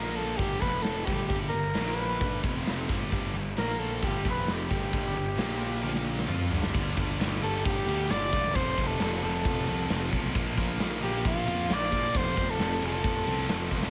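A breathy soprano saxophone leads this swaggering, anthemic hard rock passage at 133 BPM in a straight 4/4, carrying the melody with a soft attack, light vibrato and an intimate, whispered tone touched by slapback echo. Beneath it from the start, a crunchy overdriven guitar sits in the background while a scooped, high-gain guitar adds bright distortion to the riff, and a fuzz-laden picked bass digs in with punchy, overdriven weight. A big acoustic drum kit enters at 0.4 seconds, up front with a punchy kick, medium-tuned snare, bright cymbals, toms, hi-hat and ride, and a drum fill at 5.8 seconds leads into the second section at 6.7 seconds. The opening half cycles quickly through power-chord shapes on G, F and Bb, while the second half settles into broader moves between F and Bb. A lush hall reverb gives the whole band a big arena sound, and this cut from a longer piece ends as the saxophone drops out at 13.7 seconds under another drum fill.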